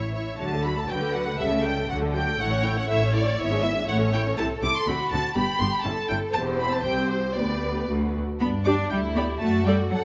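A rich first violin section carries the melody up front, its bowed line smooth and even with a lush vibrato, though it still sounds slightly distant in the hall. This quick classical-period movement for string orchestra is cheerful and lively, moving in a straight two-beat metre. Beneath the tune, a second violin section with a warm, focused tone supplies a second line, while a dark, expressive viola section fills in the accompaniment before it stops at 9.8 seconds. The bass is shared by a cello section with its own studio character, and a double bass section with a full, even sound. The harmony passes through major chords, dominant sevenths and an A minor chord before settling toward G at 4.4 seconds, with a new section beginning at 8.4 seconds as this passage, cut from a longer piece, continues. A moderate concert hall reverb wraps the ensemble in a spacious, lush glow.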